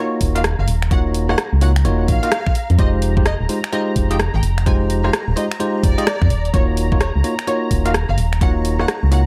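Moody and skippy, this two-step UK garage excerpt swings at 128 BPM in Eb dorian, moving from Ebm7 to Fm7 and back, with a lush bowed violin section carrying the melody through dub echo over a detuned sawtooth pad that sits in the background with chorus and sidechain pumping. A bright, bell-like tine electric piano plays up-front stabs roughened by vintage 12-bit sampler grit and analog delay, while a hollow, organ-like FM bass pumps below from 0.2 seconds. A knocking, tape-toned kick and an overdriven analog drum machine of finger snaps, hi-hat and rim click, re-recorded in a large room, drive the groove, with the kick dropping out at 8.5 seconds in an echo-heavy digital ambience.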